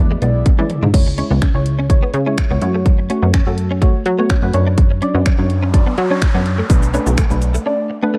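Dance-pop at 125 BPM in 4/4, bittersweet yet energetic, with a dark, warm production set in digital ambience, moving from E7 through C#m, F#m, Dmaj7/F# and Bm7. A layered, electronic house drum kit with a punchy kick, finger snaps, shaker, hi-hat, toms and crash sits up front alongside a plucky, funky analog bass with sidechain pumping, while a deep, mellow chord stab with chorus and its own pumping and a clean, direct-recorded electric guitar riff with ensemble chorus join them. A very quiet, airy, breathy pad glimmers only until 0.9 s, overlapping a brief drum fill, and an electronic noise sweep enters at 5.4 s before a short break at 7.7 s in this excerpt from a longer piece.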